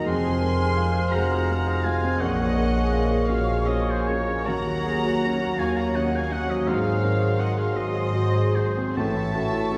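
Classical romantic writing for piano and orchestra, this lyrical, lush passage unfolds in a rubato 12/8, with a clear concert grand piano carrying the melody beside a vibrato-tinged chamber violin section played sul tasto, while a warm oboe, a floating symphonic violin section, a dark clarinet and a silvery flute in the background weave second lines. Underneath, a woody viola section and a mellow, close-miked bassoon supply accompaniment, a distant French horn section holds sustained chords, and a soft-attack trumpet section adds stabs. The bass rests on the double bass section, tuba and a very quiet cello section, all set in a wet scoring-stage reverb that places the orchestra further back in the room.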